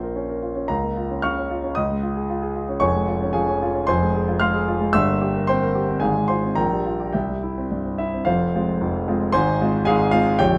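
Heard through close, detailed microphones with a light touch of reverb, a warm concert grand piano sits up front, its deep bass reaching down to Bb0 while the top climbs to F6. This stormy, agitated passage from a virtuoso classical piano study moves in 2/4 at about 113 BPM with a rubato feel, opening on B-flat minor harmonies before settling into F minor at 3.9 seconds. It pushes toward a C chord at 7.1 seconds and returns to F minor for a new section at 8.3 seconds, an excerpt cut from a longer piece.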